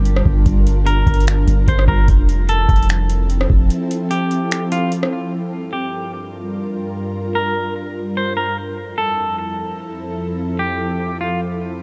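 Atmospheric cloud-rap hip hop at 148 BPM in a half-time 4/4 feel, this ethereal, spacious excerpt sits in G dorian, moving between Gm7 and Fmaj7. An airy, detuned pad built from sawtooth and triangle tones in unison holds sustained chords across the full 11.8 seconds, its slow attack and long release softened by ensemble chorus, built-in reverb and sidechain pumping. A deep, sine-like 808-style bass with a fast attack and decaying tail anchors the opening until 3.7 s, while an overdriven analog drum machine of booming kick, metallic hi-hats, finger snaps and rim clicks, re-recorded in a small room, drives the groove up front until 5.1 s. Through a break from 3.7 to 5.3 s, the pad carries on alongside a clean, twangy, fingered electric guitar that has played the melody since 0.9 s, its tone shaded by spring reverb, a low-pass filter and digital delay. The production is dark and warm, with little room reverb overall.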